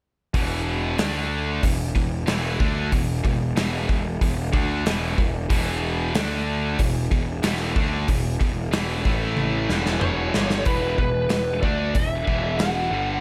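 Swaggering and anthemic, this short hard rock excerpt moves at 93 BPM in a straight 4/4, built on power-chord riffs that shift among E5, D5 and A5. Two electric guitars carry the riff together, a scooped, high-gain one with a bright distorted edge and a picked, overdriven one sitting in the background, while a fuzz-driven picked bass, punchy and up front, grounds the low end. A gated 80s drum kit, polished and airy in a bright stone room, drives the groove with a tight kick, a medium-tuned snare, hi-hat and toms, and a drum fill from 9.4 to 10.7 seconds pushes into the next section. At 10.0 seconds a smooth overdriven lead guitar enters with a bright, picked melody high above the riff, lifting the closing stretch. Light reverb gives the mix a sense of space.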